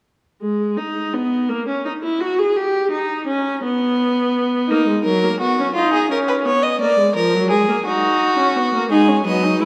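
In a straight 6/8, this contemplative yet driving excerpt from a baroque-style fugue for string quartet opens with a rich, focused viola bowing alone with vibrato from 0.4 seconds, is joined at 4.7 seconds by an up-front, warm violin with a smooth top as the second line, and finally by a clear violin carrying the melody from 8.9 seconds, all in a wet concert hall reverb.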